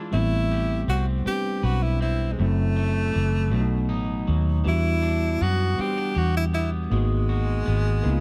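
A tine electric piano, clean through its built-in speakers, and a twangy, slightly broken-up electric guitar with tape echo open this dry, yearning late-night R&B excerpt in a slow 6/8, joined at 0.1 seconds by a dark, foam-muted fingered bass sitting round and punchy up front and a breathy tenor saxophone singing the melody with vibrato and scooped notes in a jazz-style solo over chords moving from Am9 through F#m7b5, B7 and Em7 to G#m9.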